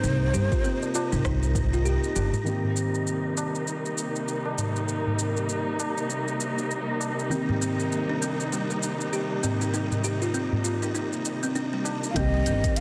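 A buzzing kalimba features in this earthy organic downtempo piece in C minor, its bright, woody thumbnail plucks tracing short arpeggios with tape echo at the opening and returning from 7.3 seconds. A lush studio string section sustains chords throughout with vibrato and portamento, gently pumping against the beat. A breathy, end-blown ney sings a brief, expressive melody with tape echo at the start and again in the closing moments. A woody, thumpy pizzicato upright bass sits up front alongside an overdriven, deep electronic kick, both heard only briefly near the beginning and end. An overdriven electronic kit supplies smooth hi-hat, rim click and shaker at a relaxed 99 BPM with a swung 16th-note feel, while a low-tuned, close and dry tabla fills the middle stretch. From 2.4 seconds, just before the harmony moves from a rootless Abadd9 to Cm7, a dark, felt-muted upright piano adds mellow, intimate accompaniment, as an airy, wind-like tuned noise texture breathes softly in the background of this warm, densely mastered excerpt with a moderate hall reverb.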